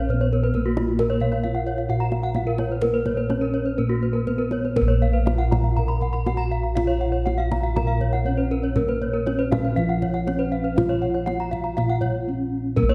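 A dark, moderate concert-hall ambience surrounds this brilliant, shimmering Balinese gamelan passage in Bb pelog, moving in 4/4 at 120-134 BPM. A mellow, airy bronze metallophone played with padded disc mallets carries the melody, while a round, up-front set of bossed gongs anchors the bass and two paired-tuned metallophones weave arpeggios above with shimmering beats: one full and close-miked under a wooden mallet, the other smooth under a horn mallet. From 0.2 seconds a kendang adds tight, dry strokes from soft hands, and the music shifts into a new section at 4.8 seconds.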